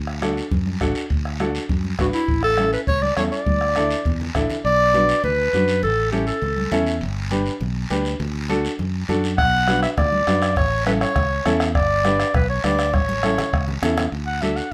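A joyful, sunny cumbia excerpt, where a clear, close-miked clarinet carries the melody from 2.0 seconds over a woody upright piano, up-front fingered electric bass, soft-beater bombo that drops out between 4.5 and 9.4 seconds, damped background congas and a raspy guiro, with drum fills and a brief piano fill in a moderate studio ambience.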